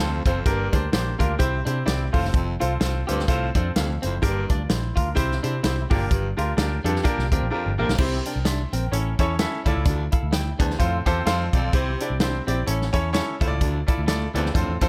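A bright, woody upright piano fill opens this passionate, driving excerpt of uptempo 1960s-style soul at 128 BPM in G dorian, alongside a breathy, whispered baritone saxophone riff with vibrato and scooped notes and a dark, round, foam-muted electric bass, before a slightly broken-up electric guitar riff sits in the background and a punchy, natural-sounding drum kit with crash cymbal, hi-hat and snare enters at 0.3 seconds, adding a fill at 7.5 seconds as the harmony moves through C, A and Dmadd9 from 8.0 seconds.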